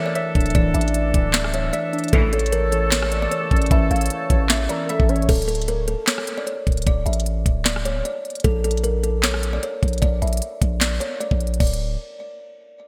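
A half-time trap beat at 152 BPM, with a knocking kick, sharp snare, crisp hi-hats, handclaps, rim clicks and crash cymbal under gated reverb, drives this brooding, melancholic hip hop excerpt, where a deep, long sine 808-style bass sits up front beneath a woody, dark kalimba melody with delay, while a velvety detuned synth lead in the background, muted felt-like synth keys, a mellow woodwind section holding sustained chords and a brief biting string stab at 2.1 seconds fill the opening before falling away at 5.3 seconds, the whole mix set in light digital ambience with a bright 1980s-style sheen.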